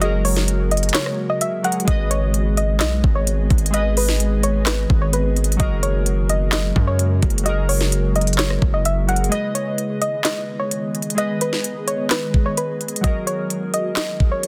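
A brooding, menacing trap excerpt in G# minor at 129 BPM with a half-time feel sets a knocking, up-front drum kit of sharp snare, crisp hats, claps and rim clicks alongside a heavy, saturated 808-style bass, a soft round pluck melody with a dark chorused edge, warbling lo-fi synth keys treated with chorus and phaser, and an ethereal, airy pad sitting mellow in the background, all sounding together from the start. The kick briefly drops out from 0.9 to 1.9 seconds as the chords move between F#add9 and G#m. At 9.3 seconds the distorted bass stops, leaving the drums, keys, pluck and pad to carry the final section in a dense, heavily limited mix with little reverb.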